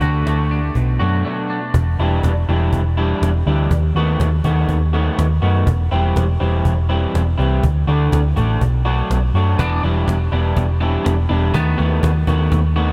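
Lightly reverberant, this bittersweet, moody indie rock fragment is anchored by a round, amped hollow-body short-scale bass sitting up front, with a dark, slightly broken-up guitar riff through a small old amp, touched with subtle chorus, playing throughout. A bright, scooped, twangy second guitar adds its clean picked riff, bathed in analog chorus and diffuse ambient delay, at the opening and again from 9.6 seconds. Underneath, a woody cajon played with soft hands and faint snares keeps a straight pulse, and a short break arrives at 1.2 seconds before the chords settle around Em7 and B7/D#.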